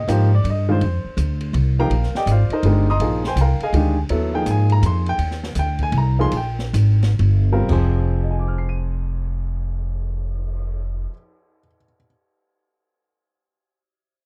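Cool and searching, this short modal jazz excerpt in a swinging 3/4 sets a warm baby grand piano, up front with rich sus chords spanning its range, over a woody, plucked upright bass and an open acoustic drum kit with dark cymbals, a medium-tuned snare and a boomy kick, all captured in a dry, close 1970s-style studio sound as the pulse slows between 5.2 and 7.7 seconds before settling onto a minor chord.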